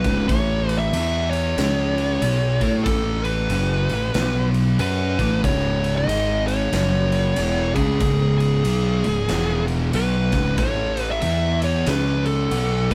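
Heavy and hypnotic, this 12.9-second stoner and doom metal excerpt sways at 93 BPM in a swung 4/4 in C# minor, its power chords cycling through A5, E5 and C#5 with a brief turn to C# minor. An up-front, dark, distorted fuzz lead guitar carries the melody over two thick, picked fuzz guitars playing the riff, one very quiet and the other sitting in the background. Beneath them, a growly, overdriven fingered electric bass holds the low end, while a big acoustic rock drum kit with a punchy kick, fat snare and ride cymbal rings out in a bright stone room, all captured as a band playing live together with light reverb.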